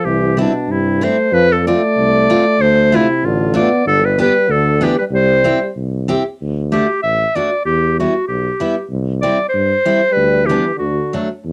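A clear, present clarinet carries the melody up front in this festive, jolly alpine dance-band piece, played in a classical style with a cassette-tape coloring on its line. Beneath it, a mellow tuba with a smooth top and light vibrato holds down the bass in a steady two-beat metre with a straight feel. A warm euphonium adds a second line with its own gentle vibrato, falling silent at 5.7 seconds and returning at 10.1 seconds near the close. A bright, full-bodied jumbo steel-string guitar, picked and up front with audible finger squeak, fills in the accompaniment from 0.4 seconds. The harmony moves through cheerful major and minor chords before shifting toward D in the second section, all set in a moderate studio reverb with a homespun cassette character in this short cut from a longer piece.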